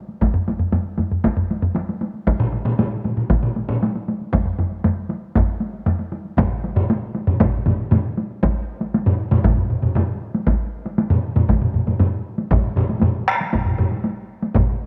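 An up-front taiko ensemble in a small room and another ensemble heard distant in a large room open this powerful Japanese traditional taiko excerpt at 117 BPM in a straight 4/4, joined almost at once by close solo taiko drums struck with heavy sticks that help drive it forward, while a close, dry ensemble enters at 2.4 seconds and the piece moves into a new section at 8.4 seconds under a light studio reverb.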